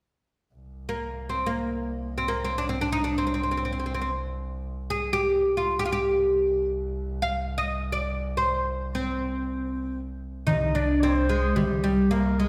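A rich, bowed double bass opens at 0.5 s with a smooth, even drone on a low C, its vibrato adding a gentle shimmer beneath this melancholic, hypnotic Turkish makam piece in free time, cut from a longer performance in makam nihavent. At 0.9 s a fretless oud takes the melody, plectrum-plucked and up front, its double strings giving a woody, deep voice that ranges from G3 up to F5. At 10.5 s the drone gives way as a clear, punchy clarinet enters with a present second line in a classical solo style, while a dark, thumpy upright bass on gut strings plays pizzicato near the front. A small, high darbuka with a clay shell and natural skin joins at the same moment, played with soft hands and sitting distant in the background. The whole ensemble rings in a wet recital hall reverb that suggests a church or concert hall.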